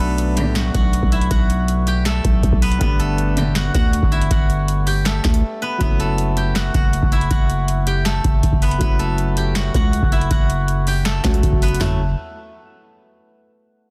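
Eerie and brooding, this half-time trap excerpt is built on a booming analog drum machine up front, with a deep kick, crisp snare, metallic hats, finger snaps, handclaps and toms, the snare, claps and hats sitting in a short room. A growling, buzzy 808-style bass with a fast attack and decaying tail sits just as close, anchoring the low end under chords moving from Bm7 to Gadd9 and then F#m7. The melody comes from a bright, silvery steel-string zither played with fingerpicks, its ringing notes trailed by tape echo. A boxy grand piano supplies accompaniment in the background, while a dark, bowed string section adds brief stabs at 0.4 and 3.4 seconds, expressive with vibrato and portamento and also carrying tape echo. A short break at 5.4 seconds leads into a new section, and the whole is finished with studio reverb in a dense, heavily limited modern master.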